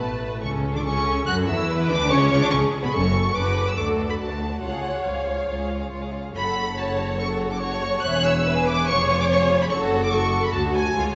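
Restless and urgent, this quick classical-period passage for string orchestra in F# minor moves at 142 BPM with a rubato feel, its lush bowed first violins carrying the melody as high as F#6 over a smooth second violin line, expressive viola accompaniment with portamento and soft attacks, and a bass of woody, dark cellos and distant double basses, the ensemble heard from further back in a reverberant scoring stage with a dulled top end.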